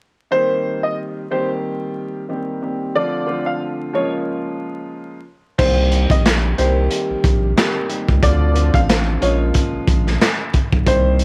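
A swung boom-bap hip-hop groove at 91 BPM in 4/4 sets a moody, tough tone in this clip from a longer piece, opening with a woody, slightly detuned upright piano carrying the melody over a grand piano accompaniment colored by cassette tape, both filtered, while chords move through Cm7, Dm7 and Bbm7. At 5.6 seconds a gritty, up-front breakbeat kit with a tight kick, medium-tuned snare, handclaps, hi-hat, dark crash and rolled-off top enters alongside a deep, thick, saturated sub bass. A small room reverb and vinyl crackle give the whole thing a homemade cassette feel.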